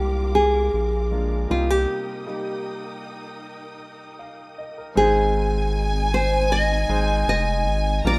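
A straight 4/4 pulse at 78 BPM carries this longing, emotional pop ballad fragment, where a full-bodied fingerpicked nylon-string guitar sings the melody up front over a thick, saturated sub bass, an intimate grand piano with audible action noise and a lush bowed string section, with a break from 1.9 to 5.0 seconds before a focused violin section adds a second line at 5.0 seconds, in a rough home demo mix with light reverb and small room ambience.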